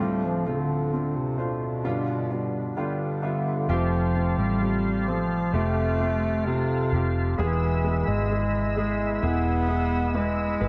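Tender and heartfelt, this pop ballad moves at an unhurried 65 BPM in a straight 4/4, and it is cut from a longer piece. A breathy bass clarinet carries the melody from the start, mellow and smooth on top with a jazz-style vibrato, sitting up front with a touch of delay. Beside it, a warm concert grand piano with deep bass and a lush chorus provides the accompaniment, adding a fill from 2.3 to 3.7 seconds after the harmony has moved from Dm7 to G7. At 3.7 seconds the music shifts to a new section on Fadd9, where a clean, smooth tonewheel organ enters with sustained chords through chorus vibrato and a slow rotary speaker, joined by a dark, round, punchy muted electric bass. The harmony settles on E at 7.4 seconds, and the whole mix is dreamy and soaked in plate reverb, with a softened, muted top end.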